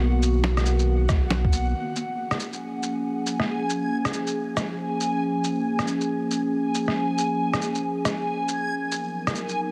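A warbling, detuned tape-like pad with chorus, phaser and sidechain pumping opens this ghostly, rainy future garage excerpt at 138 BPM in Bb phrygian, sounding from the start alongside a reversed, granular swelling texture and a round, deep dub sub bass that stops at 1.7 s, while muffled, pitched-down sampler drums (shaker, snare and rim click, plus a thumpy kick heard only briefly from 1.1 s) swing beneath as a filter sweep moves over the pad from 1.8 s, the chords shifting from Bmaj7 to Bbm7 and back to Bmaj7, the whole mix carrying a squashed radio-like, cassette-worn character with light reverb.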